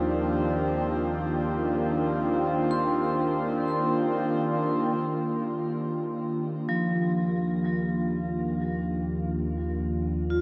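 Soaked in a huge reverb and worn, warbling cassette tape with drifting pitch, this short excerpt of serene, weightless ambient music floats in free time. A smooth, detuned analog pad sits up front with lush chorus and shimmer reverb, while a bright, ringing vibraphone struck with hard mallets traces arpeggios through a diffuse delay, and a deep, ominous drone rumbles far beneath. A reedy, breathing harmonium adds a mellow drone until 5.1 seconds, a synth drone fades out over the opening five seconds, and from 5.0 seconds a filter sweep moves across the pad.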